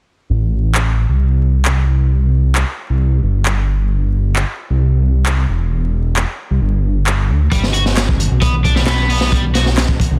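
Gritty and energetic, this excerpt of breakbeat in A dorian at 133 BPM opens on a thick, menacing detuned saw bass held up front over layered electronic handclaps on an Am chord, until at 7.5 seconds the harmony moves to G as a bright, overdriven cranked stack guitar riff with 12-bit sampler grit and digital delay joins a crunchy, saturated breakbeat kit of tight kick, medium-tuned snare and hi-hat, all set in a small room with vinyl crackle and a dense, heavily limited master.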